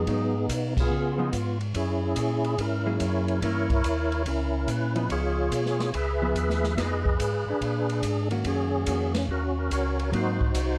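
A percussive, lightly overdriven tonewheel organ carries the melody up front through a slow rotary speaker and chorus vibrato, joined by a mellow, flute-like organ bass, a dark, picked hollow-body guitar comping from 0.0 to 10.4 s, and an open acoustic drum kit with dark cymbals and a boomy kick entering at 0.1 s, all in a soulful, swinging soul jazz organ trio at 143 BPM with a band accent at 0.7 s, chords moving from Abm7 through Gdim7 and Bb7b9 to Ab9, and light reverb on a dark production in this short cut from a longer piece.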